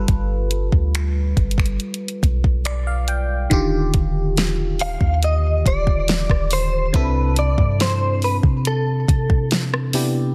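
A bright, clean electric guitar carries the melody in this dreamy, romantic contemporary R&B excerpt, entering at 4.8 seconds with a picked, compressed tone recorded direct and thickened by ensemble chorus. Beneath it, a glassy FM electric piano with a bell-like attack and a noise layer plays the accompaniment through chorus and phaser, adding a fill from 2.2 to 3.5 seconds. A soft, round 808-style bass with a dark, sine-like tone, a fast attack and a decaying tail anchors the low end. Up front, a produced electronic kit supplies a soft kick, a fat snare with soft clipping, warm hi-hat, rim click and finger snaps. The harmony moves through lush extended chords, G9 to Ebmaj9 to Cmaj13, in a straight 4/4 feel. The sound is dry, with a dense, heavily limited modern master.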